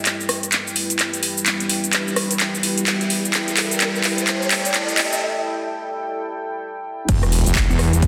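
A heavy, saturated wobble bass crashes in up front at 7.1 seconds with an overdriven, punchy electronic kick and a very quiet, dry soul drum kit, delivering the impact of this aggressive, gritty bass house passage in E minor at 128 BPM with a swung 16th-note feel. Before that, a moody, warbling pad holds sustained Em chords under chorus and sidechain pumping, while a riser and sub drop sit in the background and an overdriven house kit of metallic hats, handclaps, rim clicks, shaker and crash builds through a drum fill and filter sweep. The build pauses for a break at 5.2 seconds, all set in a lush hall reverb with a dense, heavily limited master.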